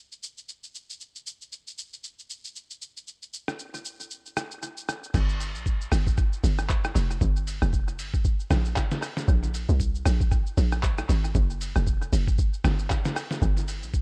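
Hypnotic and deep, this amapiano excerpt at 116 BPM in G minor swings its 16ths as a muffled, pitched-down, sampler-style drum kit of thumpy kick, fat snare, handclaps, rim click, shaker, hi-hat and crash plays up front through analog delay, until the drop at 5.1 seconds brings in a hollow, bouncy FM log drum bass with a noise layer, a fast attack and a decaying tail, all set in a dry, echo-heavy mix.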